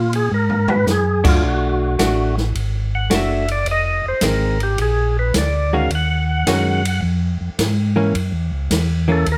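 A percussive tonewheel organ, its key click and slow rotary speaker up front, opens this swinging, greasy soul jazz organ trio excerpt at 107 BPM, soloing over a round, dark organ bass line with chorus vibrato while an open acoustic drum kit with dark cymbals and a boomy kick plays a quick fill at 0.3 seconds. A clean, compressed hollow-body jazz guitar enters at 1.2 seconds with picked accompaniment, as the chords move from F#maj9 through Bm7, Fm7 and D#m11 to F#7, all set in a moderate studio reverb.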